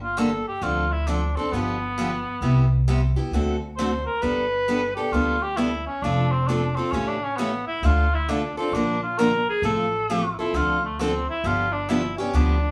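Lively and swinging, this short cut from a longer acoustic string swing piece in the jazz manouche style features a mellow cor anglais soloing up front with light vibrato in a classical manner, over a bright, boxy picked steel-string parlour guitar and a woody, thumpy pizzicato upright bass, as the band plays live in one room with wet studio reverb through changes such as Gm, Cmaj7, A7 and Bb.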